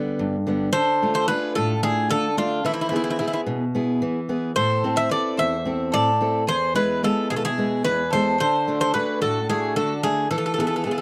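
A metallic, up-front Greek bouzouki carries the melody, its double strings partly octave-doubled, in this bittersweet, cool Greek folk excerpt that moves in 7/8 at 219 BPM in eighths with a straight feel. A boxy picked steel-string acoustic guitar, also up front with audible finger squeak, opens alone at 0.0 seconds before the bouzouki and a mellow bowl-back mandolin second line in the background join at 0.7 seconds, moving through chords such as Dm, E, Am and D. The sound is that of a dry, close 1970s-style studio recording with light reverb.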